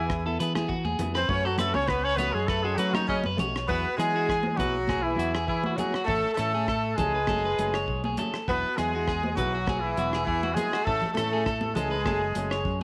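Highlife guitar-band music in a warm, carefree mood, this excerpt opens with a clear, tightly octave-doubled horn section taking a solo for its first 3.7 seconds and then carrying the melody up front. A bright, twangy, slightly broken-up electric guitar plays spring-reverbed arpeggios, a round fingered bass anchors the low end, and a soul drum kit with a punchy kick and rolled-off top plays hi-hat and rim click. A compressed clean electric guitar and ringing, high-tuned congas sit in the background of a small, lightly reverberant room.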